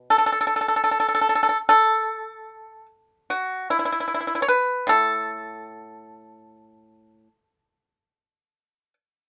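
In a free, rubato pulse around 75 BPM in 4/4, this pastoral and elegant fragment of a traditional Chinese piece features a solo pipa, plucked with fingerpicks, sounding dry, percussive and up front across a range from A2 to C#5 until 8.9 seconds, set in a light reverb.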